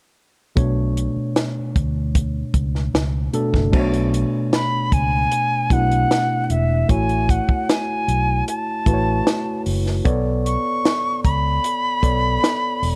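Bittersweet and smooth, this lush 1970s-style soul excerpt in B dorian moves at 76 BPM in a straight 4/4, with a worn, slightly out-of-tune tine electric piano, lightly overdriven through a combo amp, sharing the front with a dry, compact cocktail kit of punchy kick, high-tuned snare and dark cymbals over a round, foam-muted fingered bass, before an airy, reedy concert flute with vibrato and a soft attack takes the melody at 4.5 seconds, as the chords shift from Bm9 to A6 and back in a dark, small-room production.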